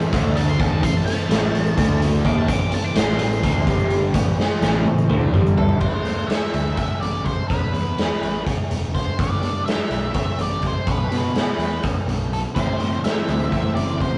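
In a straight-feel 7/8, this dark, hypnotic psychedelic rock fragment puts a punchy, saturated garage drum kit up front with a round, fuzzy picked bass behind it, while a distorted octave-fuzz lead guitar solos over a bright, double-tracked crunchy riff tinged with phaser, a silky, very quiet string machine and a faint jingly tambourine. The drums roll into a fill at 4.4 seconds. The tambourine drops out at 5.6 seconds and the riff and strings at 5.8 seconds. The riff and tambourine return at 12.6 seconds, with the strings following at 12.9 seconds. It is all captured as a rough rehearsal-room recording with light reverb.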